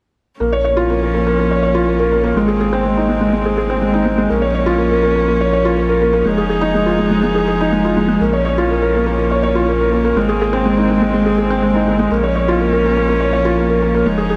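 Melancholic and moving, this short cut from a longer electronica piece moves at 123 BPM in a straight 4/4, set in Bb minor. A felt-muted upright piano sits up front with a soft, intimate riff, its thin felt and short sustain stretched by a delay. Alongside it, a rich string quartet, also up front, holds sustained chords, one player per line, with light vibrato and an airy, sul tasto bow that sounds close and chamber-like. A round, sine-like sub bass adds deep, sustained support from the start at 0.4 seconds through to 14.4 seconds. The chords circle from Bbm to Abadd9 and back, passing once through Fm7, all within a huge ambient reverb that lets the sound linger for seconds.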